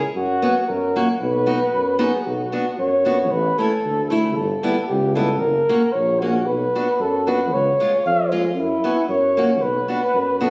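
Alpine folk in a jolly, festive dance-band vein, this short cut from a longer piece moves at 114 BPM in a straight 2/4 in B minor, with the chords turning from F# through Bm, A and Em/G. A dark flugelhorn with soft attack, vibrato and a smooth top carries the melody up front in a classical style, joined at 0.2 s by a tuba whose warm, lightly vibrating bass sits distant and roomy, and at 0.4 s by a boxy, parlour-style fingerpicked steel-string acoustic guitar. A moderate stage reverb surrounds the ensemble, captured on a phone in the room.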